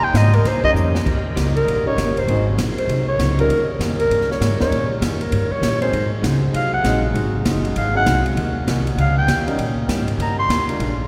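Energetic and brassy, this big band swing excerpt puts a growling clarinet up front, its raspy, gritty solo carrying vibrato and a smooth top over the Eb7 and Ab7 changes. A woody, thumpy upright bass drives beneath it with an airy, polished drum kit that drops a short fill at 0.8 seconds, while a dark, clean hollow-body guitar and a tight trombone section holding sustained chords sit in the background. A very quiet baby grand piano joins at 0.6 seconds with audible action noise, and a cathedral-like reverb gives the whole band a lush hall sound.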